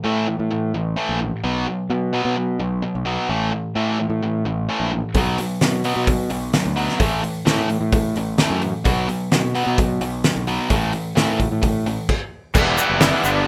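A straight 4/4 pulse at 129 BPM drives this restless, cool indie rock fragment, cut from a longer piece and carrying the loose, rough feel of a home demo with light reverb. From the start, an up-front overdriven electric guitar picks a bright riff over an A5 and B5 power-chord alternation, while a growling fingered bass, direct and amped with its own overdrive, sits forward in the mix beneath it. At 5.1 seconds a loose acoustic drum kit enters, its pumping studio room giving weight to a fat snare, punchy kick, dark cymbals, hi-hat and crash. Near the close, at 12.5 seconds, a raw garage guitar joins with overdrive, analog chorus and slapback echo, alongside a grainy tube shaker tucked in the background, as the harmony turns to E minor. The drums stop at 13.1 seconds, and the guitars, bass and shaker carry the final moment.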